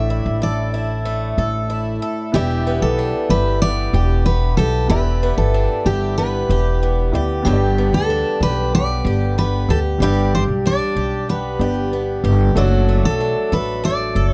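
A straight 4/4 acoustic pop passage, sunny and heartfelt, cut from a longer piece, where a full-bodied jumbo steel-string guitar picks the melody up front with audible finger squeak, a boxy, shimmering, octave-doubled twelve-string on fresh strings picks the accompaniment close beside it, a worn, slightly detuned upright piano with long sustain sits in the background, and a dark, thumpy pizzicato upright bass on woody gut strings stands forward, all captured dry with close, detailed microphones as an opening Asus4 gives way at 2.3 seconds to Em7, G and D/F#.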